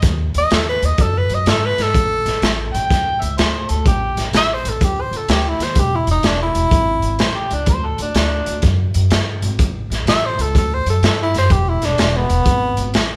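Recorded with light reverb by a band playing live in one room, this laid-back, swaggering electric blues shuffle rides a crunchy breakbeat drum kit, saturated and up front with a tight kick and rolled-off top, alongside a woody pizzicato upright bass. A warm, close-miked tenor saxophone carries the jazz-style melody with light vibrato from 0.4 seconds, while an amplified, overdriven harmonica with gritty tongue slaps and scooped notes adds a second line until 4.3 seconds and returns at 7.2 seconds. The harmony moves from D#dim to A7, then through E, D and A in this section cut from a longer piece.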